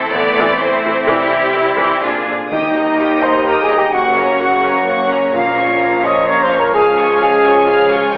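Adventurous and triumphant, this cinematic fragment in 3/4 sets lush, vibrato-laden violin sections on a melody and an intense second line over rich violas, ringing fingerpicked harp arpeggios, focused cellos and smooth double basses, with round, very quiet timpani from 1.1 s, before a dark clarinet and an airy silver flute add second lines at 2.5 s alongside tight sustained chords from bright trombones and very quiet French horns, the ensemble heard from further back in a reverberant recital hall through a thin telephone-like sound.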